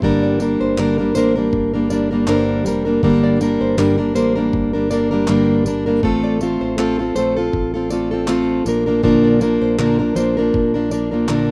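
Acoustic pop at an easy-going, carefree 80 BPM with a light 16th-note swing, moving from Gm to F/A at 6.0 seconds and Bb at 8.7 seconds in this short cut from a longer piece. A full-bodied, up-front fingerpicked steel-string acoustic guitar carries the accompaniment over a round, punchy fingered electric bass and a gritty, overdriven sampler-style soul kit of thumpy kick, handclaps and tambourine. From 0.2 seconds, a dark nylon-string guitar adds fingerpicked arpeggios with audible finger squeak in the background, all within a small room and a rough home-demo mix.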